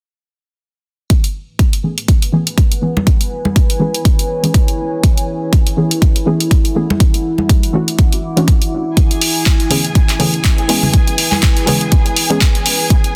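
Moody and late-night, this deep house excerpt rides a swung groove of an up-front deep electronic kick and a layered kit of handclaps and dark hi-hats from 1.1 seconds, while a muted, detuned sawtooth dub chord stab with chorus, digital delay and a filter sweep pumps alongside a slow-blooming, sub-octave ambient pad over chords moving from F#m11 through C#m7 and Dmaj9. Bright, close and dry congas pop in briefly around 3.0 seconds and return at 6.9 seconds, and at 9.0 seconds a lush, bowed symphonic violin section with expressive vibrato and a smooth top joins quietly, also pumping with the sidechain. The mix is dense and heavily limited with little reverb, apart from the pad's own built-in reverb.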